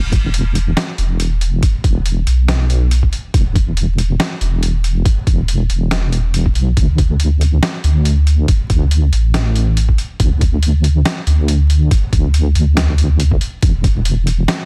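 Brooding and meditative, this deep dubstep excerpt at 140 BPM in a half-time feel with a 55% swing on the 16ths centres on a dark, detuned sawtooth-and-sine wobble bass with chorus, running from E1 to D2 up front, joined from 0.1 seconds by a thumpy, gritty, pitched-down electronic kick and a quieter tape-warm trip hop sampler kit of hi-hat and medium-tuned snare, all set in digital ambience with vinyl crackle and a dense, heavily limited master.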